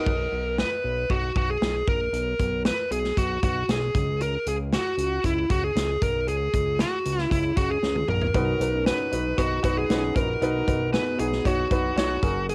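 Anthemic and warm, this piano-driven pop excerpt moves at 116 BPM in a straight 4/4 in B major, with a smooth, overdriven electric lead guitar carrying the melody up front through a cassette-tape grit over a fat, detuned sawtooth bass and a natural, punchy country drum kit that shares the same tape coloring. The woody upright piano sounds only a brief touch at the start, then returns at 8.3 s after a drum fill, as the harmony settles from G#m9 through C#5 onto B. At that point a dark, distant French horn section adds a quiet second line through analog delay until 11.7 s, all within a modest small-room home recording.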